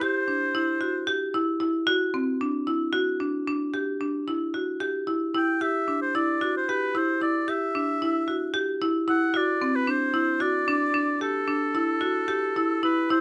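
Close, detailed microphones and a light reverb give this excerpt from a longer contemporary chamber piece an intimate, present sound. Set in an uneven 7/8 metre at 225 BPM counted in eighths with a straight feel, the music has a pensive, hypnotic mood. A marimba played with hard mallets carries arpeggios through the whole passage, its rosewood bars sounding woody, bright, percussive and airy up front. An oboe with a warm, classical tone and light vibrato takes the melody as a close-miked solo voice, appearing only briefly at the start before returning at 5.4 seconds to sing over the marimba to the end. The harmony circles around D, moving through D9, D and Dadd9 before settling on an open A5 near the close.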